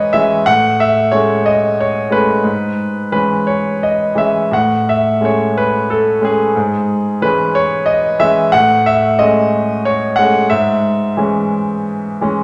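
Classical lyrical solo piano in E major, calm and warm, an excerpt from a longer piece that moves in 6/8 at 60 BPM with rubato, as a bright, brilliant concert grand sits up front with deep bass and a natural tone, ranging from G#2 to F#5 and alternating between Amaj7 and E6/G# across 12.4 seconds, all bathed in a wet recital hall reverb.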